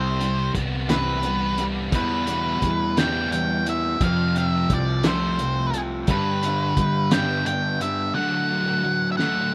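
Jangly and upbeat, this short indie rock cut from a longer piece moves at a slow 58 BPM in a straight 6/8, with chords turning from Cmaj7 through Em, F and G to D. An up-front octave-fuzz lead guitar carries the melody with a dark, distorted bite, set over two picked rhythm guitars: an overdriven, compressed riff part and a sludgy, warm one colored by analog chorus. A fuzz fingered electric bass adds punchy, overdriven low end before dropping out at 8.1 seconds. The cloth-damped drum kit sounds muffled and gritty, with a fat snare, a tight kick and hi-hat, and a drum fill closes the passage at 9.2 seconds. The rough home demo mix has little reverb, and the drums' small-room, lo-fi sound and rolled-off top add to the homespun feel.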